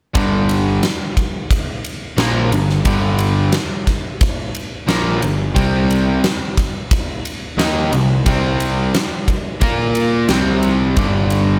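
A huge arena drum kit sits up front with a punchy kick, fat snare and bright ride cymbal, driving this gritty 89 BPM classic rock excerpt in G minor as a crunchy, bright overdriven guitar with slapback echo and a hollow-toned overdriven semi-hollow guitar in the background play the riff over a dark, round fuzz bass, moving from Gm to C5 at 5.6 seconds and on through Bb5 and C5 back to G5, all bathed in a lush hall reverb for a big arena sound.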